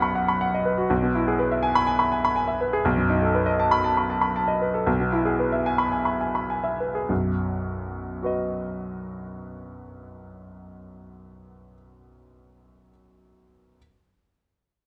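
Classical virtuoso piano study, heard in a short excerpt cut from a longer piece, with a heroic, brilliant mood and a free, rubato feel. A clear, present grand piano plays solo from the deep bass to the upper treble, slowing down between 1.9 and 7.1 seconds before a new passage begins at 7.1 seconds. The piano sits up front in a moderate, large studio reverb.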